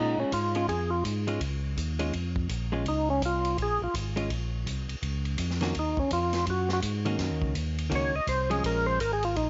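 A fat, percussive tonewheel organ carries the soloing melody from the first moment, lightly overdriven with key click, chorus vibrato and a slow rotary speaker. A full organ bass line sits up front with tube saturation, and a dark, clean hollow-body guitar comps. At 0.3 seconds a swinging big-band kit joins with a punchy kick, a medium-tuned snare, hi-hat and ride, in this bluesy, soulful soul jazz organ trio excerpt in Bb minor, swinging at 166 BPM over Bbm7 and Ebm7 in a small, lightly reverberant room.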